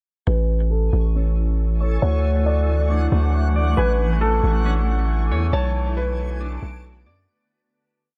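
Atmospheric cloud-rap hip hop with a blissful, dreamy mood, this short piece moves in a half-time feel and unfolds as a single breakdown under a filter sweep, fading out from 5.5 seconds. A long sustained 808-style bass sits up front with deep sine sub-bass notes that slide in pitch. A felt-muted upright piano carries a sparse looping melody, soft and intimate with audible action noise, shaded by a low-pass filter and dub echo. A Celtic harp rings in the background with a falling eighth-note arpeggio repeated like a sampled loop, also filtered and echoed, and it lingers alone until 8.2 seconds. A granular cloud pad holds blurred, evolving chords with a bright edge, while a reversed, detuned backwards swelling texture drifts high above, both bathed in their own reverb. The harmony moves from Amaj7 to Dmaj7, back to Amaj7 and on to Bm7, all within a small, echo-heavy room.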